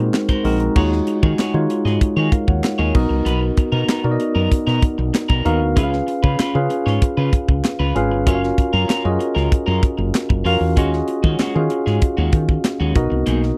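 A clean tine electric piano with subtle chorus and a dark, round fretless bass open this urban, nocturnal stretch of polished 1980s jazz-funk pop, joined almost at once by a tight, airy funk kit with a high-tuned snare, a slightly broken-up picked guitar riff in lush chorus, and crisp group handclaps tucked in the background, all moving through rich extended chords in a dry, close studio sound.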